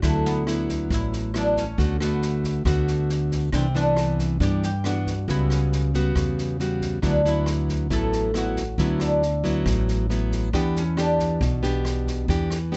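Sunny and relaxed, this short bossa nova passage, cut from a longer piece, moves at 137 BPM in a straight 4/4 in D major. A fingerpicked nylon-string guitar sits up front with a classical, warm tone, carrying the accompaniment through chords such as D69, Cmaj9, Em69/C# and Em7. Over it, a plectrum-plucked, fretless oud with double strings sings the melody in a bright yet deep, woody voice. An upright bass played pizzicato on steel strings adds a thumpy low end, while a natural-sounding open jazz kit in a small room keeps time quietly with a boomy kick, rim clicks and a medium-tuned snare. Light reverb softens the mix, and the top end stays gentle, ending below 8.0 kHz.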